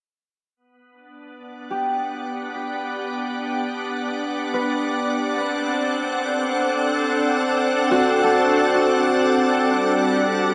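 Serene and warm, this free-time ambient passage, cut from a longer piece and tuned to A4 = 439 Hz, fades in as a pure, detuned, organ-like pad with ensemble chorus sustains up-front chords from 1.3 s, while a mellow, ringing fingerpicked Celtic harp enters at 1.7 s with background arpeggios under a diffuse delay, all set inside a huge, wet reverb as the harmony moves from Gmaj7 to D7 and settles on G5 at 9.6 s.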